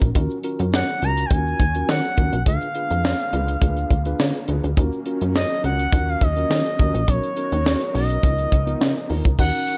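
Early-eighties boogie funk with a danceable, slick mood, this short cut from a longer piece rides a straight 4/4 groove. A tight funk drum kit sits up front with bright cymbals, a high-tuned snare and a tight kick, dressed in gated reverb, while a grainy tube shaker ticks close in the background. The plucky analog bass is punchy and funky, its filter pluck giving each note a fast attack that decays, and it shares the front of the mix with the drums. A mellow tine electric piano comps cleanly through its built-in speakers, and a lush, airy unison pad holds very quiet detuned chords beneath it, thickened by chorus and phaser. At 0.8 seconds an expressive synth lead enters on the melody, smooth and sustained with chorus and vibrato, sitting in a high register over chords that move from Ebm9 through Bb7b9 to Bmaj7 and Db13. Light reverb gives the whole a polished sheen.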